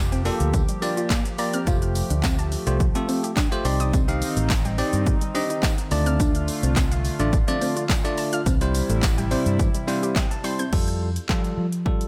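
A shimmering, retro pulse-width pad and a round, foam-muted electric bass open this carefree, upbeat dance-pop excerpt in F major at 106 BPM, both pumping against the beat as a punchy analog drum machine with tape-warm kick and snare, handclaps, hi-hat, shaker and crash drives a straight 4/4. A hollow, bouncy square-wave pluck plays arpeggios with chorus and tape echo in the background, a dark, clean electric guitar riff sits behind it through ensemble chorus, and a very quiet, jingly tambourine adds close, dry percussion. A bell-like tine electric piano comps up front over chords moving from Gm7 through Fadd9, Cmadd9, Dm and C, then takes a fill from 9.6 seconds before the music settles back on Fadd9 at 10.7 seconds with little reverb.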